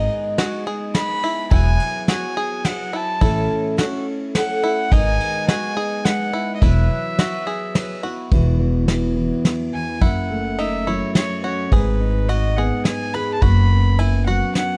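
A dry, close 1970s-style studio sound with small room ambience frames this uplifting indie folk passage in 3/4, cut from a longer piece with a building arrangement. A reedy, bowed fiddle with a gut-string tone carries the melody over twangy banjo arpeggios played with fingerpicks, a shimmering, octave-doubled twelve-string guitar with subtle chorus, and a woody, dark pizzicato upright bass, while a soft brush kit with a tight kick and ride cymbal joins at 0.4 seconds, sitting up front with the bass. At 8.3 seconds the twelve-string gives way to a full-bodied, fingerpicked plugged-in steel-string guitar, and the harmony shifts to F#m7 at 10.0 seconds.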